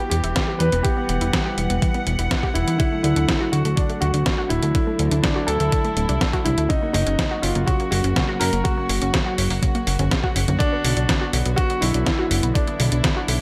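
Grand piano with tape echo carries the melody over soft, floating sustained chords from a studio string section and a lush, detuned unison pluck playing arpeggios through digital delay in the background, setting a melodramatic, bittersweet italo disco mood in straight 4/4. A fat, saturated analog bass sits up front alongside an overdriven, detuned 8-bit drum machine with congas, hi-hat and a gated-reverb snare, while a thumpy electronic kick enters at 0.4 seconds. The chords move from Em through D and F# to Bm in this short section cut from a longer piece, all set in a light reverb.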